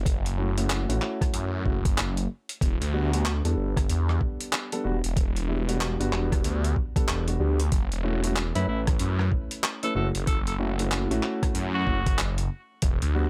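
A swirling, thick detuned saw bass with a phaser sits up front in this swaggering, gritty glitch hop excerpt at 94 BPM in 4/4 with a 16th-note swing, moving through F#m7, Em9 and back to F#m7 in F# phrygian. A thumpy, pitched-down electronic kick and a tape-toned sampler-style kit of handclaps, hi-hat and rim click drive the groove, while dark, mellow baby grand piano stabs carry 12-bit sampler grit, sidechain pumping, low-pass filtering, digital delay and a filter sweep throughout. A raspy, punchy tenor saxophone with digital delay takes a short solo from 8.6 to 12.2 seconds, all in a dry, close-sounding mix.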